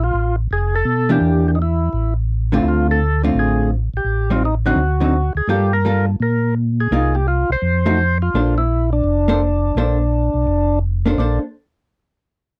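Swinging and bluesy, this soul jazz organ trio excerpt moves at 169 BPM in Bb major, with a percussive tonewheel organ carrying the melody through a slow rotary speaker, its key click and second harmonic percussion giving a full, clean attack. Underneath, a mellow tonewheel organ plays a round, dark bass line colored by chorus vibrato and slow rotary, while a vintage hollow-body jazz guitar enters at 1.1 seconds with picked, compressed accompaniment. The dry, close 1970s-style studio sound carries light reverb, and the harmony travels through rich minor-seven-flat-five and flat-nine chords before settling on Bbmaj9.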